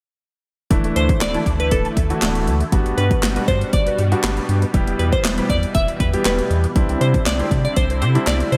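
A straight 4/4 house beat at 119 BPM drives this dance-pop excerpt, with a punchy kick, cracking snare, handclaps and hi-hat sitting up front, layered and tape-tinged, carrying gated reverb and the character of a large room. Beneath it a deep, round sine sub bass holds the low end, while an intimate, polished concert grand piano with audible action noise and long sustain plays the accompaniment, both pumping with sidechain compression. In the background, a detuned sawtooth supersaw swell with a slow attack and ensemble chorus sustains evolving chords, also pumping, and a very quiet, lush unison pluck adds short, punchy arpeggios. From 1.0 s a glassy, crystalline wavetable pluck with ring modulation, a filter sweep and chorus carries the bright melody between A4 and E5. The harmony moves through Dsus2, Gmaj7, Em and Cadd9, giving a bittersweet yet driving mood within light reverb and a bright 1980s-style digital production.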